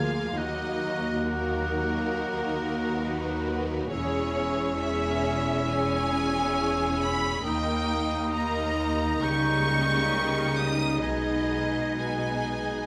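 Moving in a rubato 4/4, this elegiac, melancholic fragment of a slow romantic orchestral movement features a lush, bowed violin section singing the melody with smooth vibrato, while a second violin line, an airy, distant flute high above and a warm clarinet far back in the blend trace supporting lines. Rich violas supply the accompaniment, mellow French horns hold sustained chords, and the cellos and double basses anchor the bass. The whole ensemble sits in a recital-hall reverb, as the harmony drifts from D#m through C#m/E and D#7/C# to G#m/B by 11.0 seconds.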